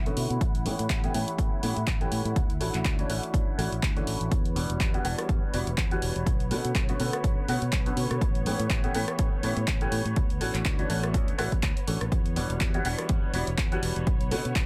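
Lightly reverberant, this groovy, nostalgic filtered disco house excerpt in E dorian moves at 123 BPM with swung 16ths under a filter sweep across its 14.7 seconds: rich, smooth bowed strings hold chords, a growly fingered electric bass sits below, and a brilliant, worn grand piano with audible action noise and phaser plays over A7, Dmaj7, Em7 and Bm7, all three sidechain-pumped and low-pass filtered, while a tape-warm analog drum machine adds handclaps, rim click and pumping hi-hat beside an up-front, punchy electronic kick that enters at 0.4 seconds.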